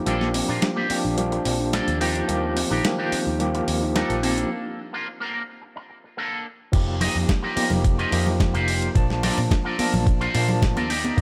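A barky, overdriven tine electric piano with fast tremolo and tape echo sits up front in this sunny, feel-good nu-disco excerpt at 108 BPM in Bb major, joined by a twangy envelope-filtered electric guitar riff, a dark, foam-muted picked bass and a dusty, tape-warm soul drum kit, while soft, round pluck arpeggios with a filter sweep ride in the background during the build-up until 4.5 s, then after a short break a thumpy electronic kick drops in at 6.7 s and bright, high-tuned congas follow at 7.0 s, all under a moderate plate reverb.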